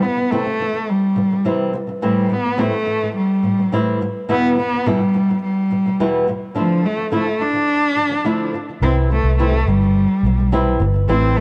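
Sunny and easy-going, this short pop excerpt moves at 106 BPM in a straight 4/4, centred on C major and tuned slightly below standard pitch. A single bowed cello carries the melody, its nasal, boxy tone shaped with expressive vibrato and portamento. Beneath it, a flamenco guitar fingerpicks the accompaniment throughout, sounding acoustic and dark, with audible finger squeaks. At 8.8 seconds a vintage electric bass joins, its foam-muted, fingered notes round and punchy and sitting up front. The chords pass from C through Am7, Em and Dmadd9 before returning to C, all within light reverb and a dark, warm production.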